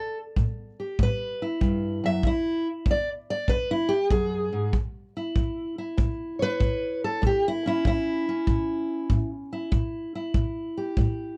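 A dry recording frames this laid-back, swaggering acoustic country blues, cut from a longer piece and moving at 96 BPM in 4/4 with a swung eighth-note feel. A warm, fingerpicked steel-string acoustic guitar carries the melody up front and takes a solo across the whole 11.4 seconds, ranging from E2 to E5 with audible finger squeak as it moves from A5 to E and back to A. A punchy, roomy kick drum, played with brushes, enters at 0.4 seconds and stays until 11.2 seconds.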